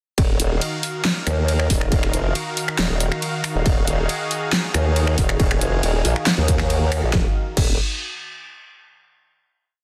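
Up front sits a formant-sweep wobble bass, a compressed pulse-and-sine tone with chorus and overdrive, growling between Eb1 and Eb2 in modulated phrases whose wobble speed keeps changing. This is a whole piece of heavy wobble dubstep at 138 BPM in a half-time 4/4 feel, chaotic and aggressive, sitting on an Ebmadd9 chord in Eb minor. A distorted, layered electronic kick pounds beneath a tape-warm dubstep kit whose huge snare, bright hats, ride, finger snaps, handclaps and crash push hard at the front of the mix. Behind them, a lush, thick, airy unison pad of detuned sawtooth with a noise layer rises slowly into sustained chords, colored by chorus and phaser and pumping against the sidechain. The drop runs from 0.2 to 7.1 seconds, with a band accent at 6.9 seconds, before the pad drops away at 7.3 seconds and the bass, kick and kit carry on into the final moments. The dense, heavily limited modern master wraps it all in digital ambience.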